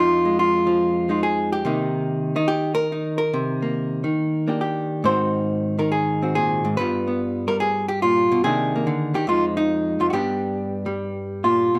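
Solo jazz in C minor with a moody, smoky air, swinging at 142 BPM in 4/4 while stretching the time rubato, tuned slightly high at A4 = 441 Hz. A vintage hollow-body electric jazz guitar carries the whole 11.8-second excerpt alone, its clean, picked, compressed tone sitting up front as it ranges from F2 to C5 through Fm7, Cm9, Ab7 and G7#9 changes. A moderate large-studio reverb gives the sound a roomy bloom.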